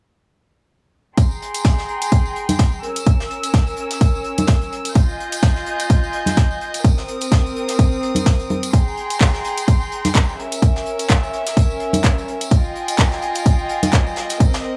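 Piano house at 127 BPM in Ab major, this joyful, euphoric cut from a longer piece rides a swung 16th-note groove in 4/4. A rich chamber violin section holds sustained chords from 1.2 to 14.8 seconds, its biting, earthy tone with light vibrato and a smooth top, shaped by sidechain pumping and a low-pass filter. Up front, a punchy, overdriven electronic kick anchors the beat, joined by a layered house kit of handclaps and bright hats that also carries overdrive. A jazz brush kit adds airy small-room hi-hat and a medium-tuned snare, with pumping on its hats and high-pass filtering on hats, snare and room, while tambourine and congas bring close, dry hand percussion. The chords move through Abmaj9, Dbm6, Fm9 and Cm7 before cycling back, all captured in a dry, gritty hardware sound with little reverb.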